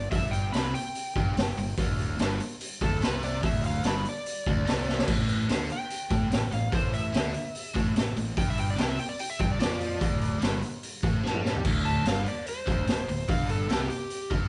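This sounds like a band playing live together in one room, with light reverb and a dusky, capped top end. The cut is swaggering, gritty blues rock with a strong southern rock streak, taken from a longer piece and set in a straight 4/4. An overdriven slide guitar carries the melody as a solo through the first 11.6 seconds, singing in a warm upper register above a biting, double-tracked, picked guitar riff down low. Beneath them, a fingered electric bass, bright and growly with fuzz, sits in the background. An up-front garage drum kit, with a boomy kick and a saturated sound, drives the music, with fills at 4.9 seconds and again just before the change at 11.6 seconds. The harmony moves from Gsus4 through D7sus4, A5 and G5, then passes through Dsus4, Gsus2/A and D7(no3) before returning to Gsus4 at the close.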